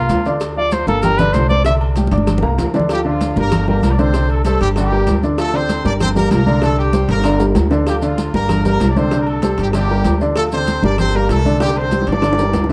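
A clear trumpet with scooped, vintage-toned notes and plate reverb opens this driving, danceable salsa excerpt with a brief solo before a brilliant, punchy horn section takes over the melody at 2.9 seconds, carried by a woody, short-sustain upright piano, a thumpy gut-string pizzicato upright bass up front, and background congas, tight high-tuned cowbell and bongos, grainy maracas, and ringing, distant timbales and agogo bells, with drum fills punctuating a dark production.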